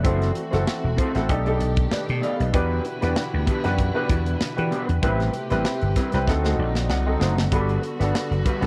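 This polished 1980s jazz-funk pop clip moves at 96 BPM in 4/4 with a light swing on the sixteenths, its nocturnal, bittersweet mood carried by a chord run from F#m7b5 through B7alt and Em7 to Am9, D7b9 and finally Gmaj7. A growly, punchy slap bass sits up front with a bright, amped edge, while a tight funk kit with a medium-tuned snare and rolled-off top keeps hi-hat, kick and snare close and forward. A baby grand piano with a warm, natural tone and analog chorus supplies the accompaniment, and a clean, fingered electric guitar, also treated with analog chorus, plays a dark riff in the middle register. Behind them, a lush bowed string section holds sustained chords with expressive vibrato and a smooth top. At 6.3 seconds the drums and piano both break into fills that run to 7.5 seconds, just before the resolution to Gmaj7, and the dry, close recording has a 1970s studio intimacy.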